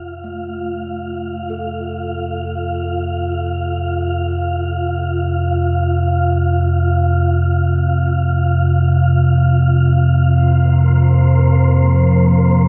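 Cavernous and desolate, this dark ambient drone in free time and F major rests on an ominous, wave-folded rumbling drone up front, while an airy, wind-like tuned noise texture fades in, a mellow bronze metallophone with shimmering beats fades in with delayed arpeggios from 0.2 to 6.9 seconds, and, after the harmony moves from F to Bbsus2/F at 10.2 seconds, a moody, detuned pad arrives in the background at 11.9 seconds, all inside a vast cathedral reverb and a shadowy mix.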